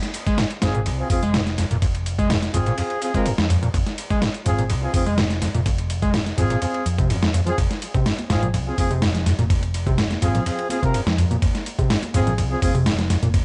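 A squelchy, square-wave acid bass drives this gritty, swaggering breakbeat cut, its resonant filter-plucked riff running from F2 to Ab3 from 0.3 seconds with saturation, a lush chorus and a cassette-tape coloring. Underneath, an overdriven, up-front soul sampler-style drum kit with a thumpy kick, medium-tuned snare, hi-hat and ride cymbal holds a straight 125 BPM in 4/4, alongside an analog electronic hi-hat sitting in the background. A dark, round hollow-body electric bass anchors the low end from F1 to F2, while a brass ensemble punctuates with classical-style stabs between C4 and Bb4, softened by a low-pass filter, roughened by 12-bit sampler grit and trailed by dub echo. Bright, compressed bongos and congas enter at 7.9 seconds, tucked behind the groove. The whole excerpt rests on a single F minor chord, set in a digital ambience with vinyl crackle and a dusty, rolled-off top.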